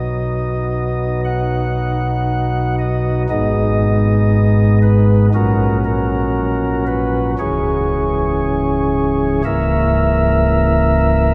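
A long, wet cathedral reverb with a 5.6-second decay surrounds this grave, dark classical chorale, an excerpt cut from a longer piece. A solo pipe organ sits up front on soft flute stops with a baroque voicing and a tremulant, its tone warm and reaching from C#1 up to F#5. The rubato chorale moves through B, G#m, F#/A#, C#m and A#dim/C# across its 11.3 seconds.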